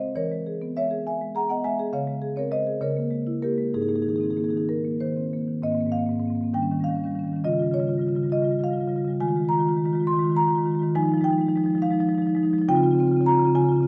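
A solo marimba played with soft mallets sits up front, its rosewood bars sounding woody, round and mellow as it moves through a flowing, hypnotic contemporary classical passage in 6/8 with a rubato feel. Lush extended harmonies drift from Eadd9 and Dbmaj7 through Fm9 to a closing Dbmaj7#11, with a new section opening at 5.6 seconds. A wet recital hall reverb and dark production wrap this brief fragment of a longer work in a softly glowing space.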